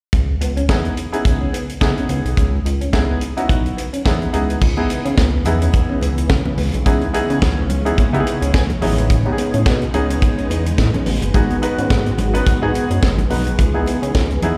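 Lightly swung sixteenths from a tight, up-front funk kit with dark cymbals and a high-tuned snare drive this slick early-eighties boogie funk, where a glossy, chorused synth bass and a clean, dark electric guitar riff play alongside an intimate baby grand piano with audible action noise, joined at 4.6 seconds by a silky string machine and soon after by very quiet, bright congas, before the piano adds a fill at 8.3 seconds, the whole band heard as a live gig through the venue's PA.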